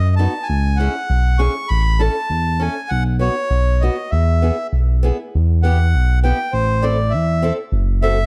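Light reverb and a studio ambience frame this bouncy, jolly snippet of alpine dance-band folk in a straight 2/4. A reedy, close-miked accordion carries the melody up front with a slapback echo, while a dark, smooth synth bass with portamento glides beneath it, and a boxy, picked ladder-braced acoustic guitar joins at 0.2 s, sitting low in the mix. Around 5.3 s the harmony turns toward Em and Am before closing on F#dim.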